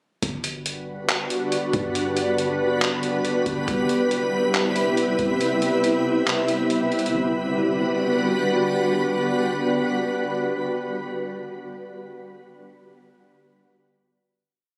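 A shimmering, detuned pad with a granular, ethereal sheen and an octave-up glow sits up front in this floating, blissful cloud-rap piece, holding sustained chords with chorus and reverb that gently pump against the beat as it moves from Gmaj7 to Cmaj7 and back. Alongside it, a gritty, pitched-down, compressed sampler-style kit, also up front, plays a sparse half-time beat of thumpy kick, handclaps and fast hi-hat rolls, dropping the kick at 5.4 seconds and stopping at 7.1 seconds, while a soft, round 808-style bass stays deep and dark in the background with long sub-bass notes that follow the kick. The pad then rings out on a final Gmaj7, with the bass lingering beneath it until about 8.8 seconds, all wrapped in light digital ambience with the faintly roomy feel of a phone recording.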